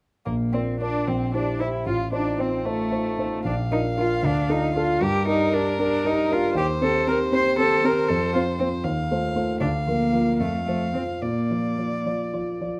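Close, detailed microphones and light reverb give this excerpt from a quick classical-period piano trio movement an intimate, graceful and cheerful character, moving in 6/8 at 77 BPM in Bb major with uneven beats and rubato. A veiled, con sordino violin sings the melody with vibrato, while a muted, up-front cello traces a second line with portamento. Underneath, a dark, mellow concert grand with deep bass, a vintage tone and short sustain supplies the accompaniment from 0.3 s to 12.8 s.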